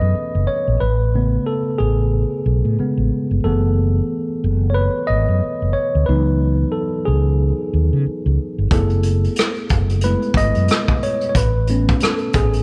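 Studio reverb surrounds a worn, slightly out-of-tune tine electric piano, lightly overdriven through its built-in speakers, which takes the solo from the start over a dark, round, amped fretless bass in this soulful, late-night R&B and neo-soul excerpt at 91 BPM in F# dorian with a swung 16th-note feel. The harmony moves between F#m11, Amaj7 and C#m11. At 8.7 seconds a vintage brush drum kit arrives, its punchy kick, hi-hat and rim click sounding distant in a small room with a rolled-off top.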